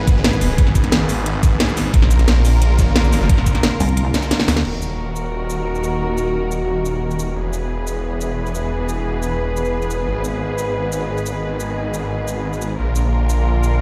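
Mechanical and dark, this cut from a longer dark technical drum and bass track opens on a drop where a snarling, distorted saw bass growls up front beneath muted, veiled chamber strings holding sustained chords that pump against the beat, while a knocking electronic kick, a cracking up-front kit with metallic hats and shaker, and a very quiet, gritty breakbeat kit drive the groove. The kick falls away at 4.0 seconds for a drum fill, and a brief, pulsing chorused wobble bass stab slips in just before. From 5.3 seconds a warbling, nostalgic lo-fi pad drifts in the background, all set in a bare room's large studio reverb.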